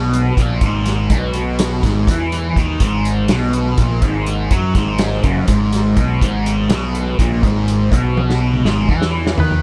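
Riding a straight 7/8 pulse, this dark, mysterious psychedelic rock passage, cut from a longer piece, is driven by a bright, double-tracked fuzz guitar riff with phaser sitting up front, a growly overdriven fingered bass, and a vintage acoustic kit with a punchy kick and rolled-off top in a small pumping room that breaks into a fill at 8.2 seconds, before a dark, slightly broken-up lead guitar with wah enters at 9.4 seconds, all set in light studio reverb.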